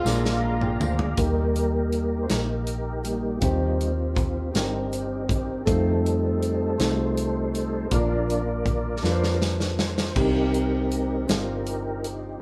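Uplifting and hopeful, this slow gospel excerpt in 6/8 at 53 BPM opens with a brief overdriven slide guitar line with tape echo and a very quiet saxophone section over a jingly tambourine, piano fill and drum fill, then settles into an organ solo from 1.2 seconds on a key-clicking tonewheel organ through a slow rotary speaker, backed by an intimate grand piano with long sustain, a dark, round hollow-body bass and a punchy drum kit with bright cymbals, all in a moderate studio reverb.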